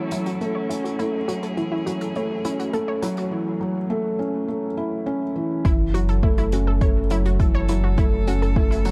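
A straight 4/4 pulse at 103 BPM drives this intimate, hypnotic piano-and-strings electronica in F# minor, resting on an F#m7 chord, as brushed hi-hat enters alongside a felt-muted upright piano riff that sits up front from the start, soft and mellow with audible action noise and tape echo. A detuned, warbling unison pluck plays arpeggios through cassette tape and echo under a filter sweep during the build-up, while a bowed string quartet with vibrato and portamento holds pumping, sustained chords, dropping out at 3.3 s and returning at 7.5 s. Arriving at 5.6 s for the drop at 5.7 s, a round sine sub bass on F#1 and a deep, overdriven electronic kick join in, all within a dark production with light reverb and small-room ambience.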